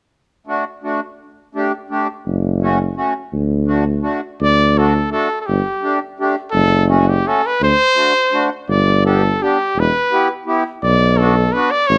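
A bright trumpet with light vibrato carries the melody in a classical style, entering at 4.4 seconds and sitting up front for the rest of this short excerpt. This is a jolly, festive alpine folk piece in D major and 3/4 time, tuned to A4 = 436 Hz, moving at 169 BPM with a loose, rubato feel. A reedy, vintage-sounding accordion opens the accompaniment at 0.5 seconds; its tone is band-limited, with a slow beating in the reeds. A warm tuba joins at 2.3 seconds on the bass line, with gentle vibrato and a roomy, slightly distant quality. The harmony moves through D, Gsus2 and F#m and back to D before the melody arrives, then returns to Gsus2 and F#m and takes a longer path through D7, G, Em and Bm. Light reverb and close, detailed microphones keep each instrument clear and present.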